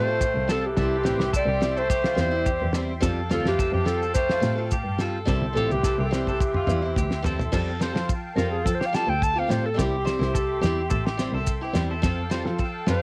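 A light-reverb home cassette recording captures a carefree, sunny highlife guitar band at 107 BPM in F major, with a mellow, vibrato-laden clarinet singing the melody up front over a breathy, raspy tenor saxophone second line that drops out at 7.3 seconds, a boxy picked archtop guitar with finger squeak, a shimmering musette accordion holding chords in the background, twangy tremolo arpeggios from a slightly broken-up electric guitar, a bowed double bass with a rich gut-string tone, a dry 70s drum kit with a fat snare and tight kick that plays a fill from 5.3 seconds, and grainy, close maracas, before the clarinet takes a jazzy solo from 7.5 seconds in this fragment of a longer piece.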